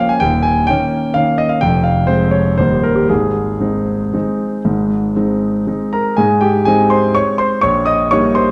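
A solo concert grand piano opens this graceful, playful classical waltz in Ab major, its tone clear and natural and placed up front, with a deep bass reaching down to Eb1 and a range extending up to Eb6. The 3/4 pulse moves with a rubato feel, the tempo drifting between 112 and 134 BPM. The harmony circles around the home key, moving through Eb7, Fm and Eb before settling on Ab near 3.1 seconds. A new section begins at 6.2 seconds and leans on an Eb7/Bb chord at 7.6 seconds, just before the 8.5-second passage, cut from a longer piece, breaks off. A wet recital hall reverb surrounds the instrument, and the production has a dark, warm character.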